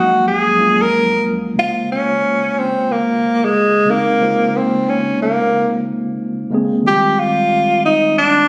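A breathy tenor saxophone with slapback echo and plate reverb sits up front over a clean, direct tine electric piano from the first moment of this soulful, smooth R&B excerpt in Bb minor at 91 BPM with a swung 16th feel, the saxophone moving into a jazz-style solo at 1.6 seconds, full of vibrato, subtone and scooped notes, as the mellow chords shift from Ebm11 to Bbm9 and then to Fm9 at 6.8 seconds, the pair captured on a phone in a room with moderate studio ambience.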